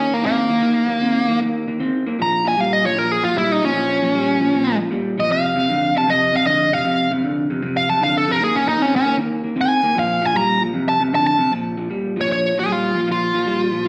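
A bright, overdriven lead guitar takes a soulful solo through the first 11.5 seconds of this brooding Bb minor blues, swinging at 154 BPM over a picked, slightly broken-up rhythm guitar riff from a small old amp, both up front in a band playing live in one large studio room with moderate reverb, in a short cut from a longer piece.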